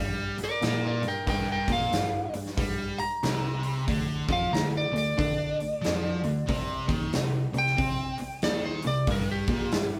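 Blues rock in the power-trio mould with a southern rock edge, this raunchy, driving cut from a longer piece moves in 4/4 with a loose swung eighth-note feel. A sludgy, overdriven electric guitar carries the riff up front, picked and double-tracked for extra weight. Beneath it, a single bowed cello takes the bass role with a clear, smooth, even tone and gentle vibrato. From 0.4 seconds a lightly driven lead guitar, slightly broken-up and compressed, sits forward with a picked melody high above, while a huge arena drum kit of hi-hat, punchy kick and medium-tuned snare pushes along with a natural, big-room sound. The chords move from Gm to Dm to Cm and back to Gm at 9.1 seconds, all captured as a band playing live in one room with light reverb.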